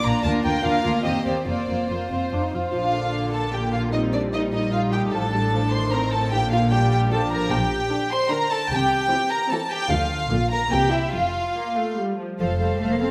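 Up front, the first violins carry the melody with a soft attack and a pure, floating sul tasto tone, played close in this cheerful, lively classical-period movement for string orchestra. It moves briskly at 150 BPM in 3/4 with a straight feel, starting in Bb major and shifting to F major from 7.5 s. Beneath them, the second violins sing an intimate second line with light vibrato, while the violas fill in the accompaniment with their own warm, floating sul tasto sound. The cellos sit in the background with a smooth top, and the double basses anchor the bass with a dark, woody tone and vibrato, all bowed sul tasto as a close studio ensemble. The harmony passes through chords such as Cm7/Eb, Fsus4 and Gm/Bb before settling on F at 11.1 s. A recital-hall reverb adds a wet glow around the strings in this short cut from a longer piece.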